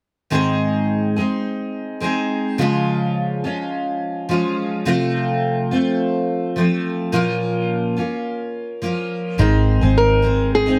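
Set in a moderate booth ambience, this easy-going, heartfelt pop excerpt in Ab major moves at 106 BPM with a light sixteenth-note swing. A double-tracked, dreadnought-bodied steel-string acoustic guitar sits up front with plate reverb, picking a warm accompaniment through Ab, Db, F/C and Bbm from 0.3 seconds. At 9.4 seconds a small, fresh-strung nylon-string guitar joins with a fingerpicked melody in plate reverb, over a round, foam-muted vintage electric bass that sits on a dark, amped low Ab.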